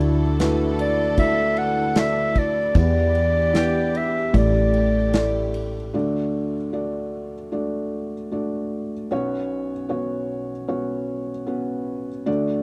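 Acoustic folk-pop ballad in D major at 76 BPM, heartfelt and nostalgic, captured as a dry, close 1970s-style studio recording in a small room. A dark clarinet carries the melody from 0.8 s over a felt-muted upright piano with audible action noise, a round, hollow-body fretless electric bass, soft-attack bowed strings playing sul tasto with light vibrato, very quiet ringing harp arpeggios, and an up-front drum kit played with bundle sticks on punchy kick, ride and snare. By 5.9 s every part but the mellow, intimate piano has dropped out, and it continues alone from D to Bsus2 until the cut at 12.6 s.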